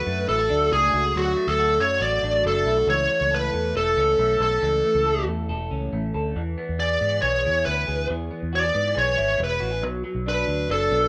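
A smooth, overdriven lead guitar sits up front with a bright, picked melody, set over twangy, slightly broken-up arpeggios from a second electric guitar run through a small old amp and treated with phaser. A dark, round, foam-muted fingered bass joins at 0.1 seconds, giving this short cut of jangly indie pop at 138 BPM in A major a nostalgic, youthful feel. The chords move from a rootless Bm through A and E and back to Bm, heard in moderate studio reverb with the rough character of a home demo mix.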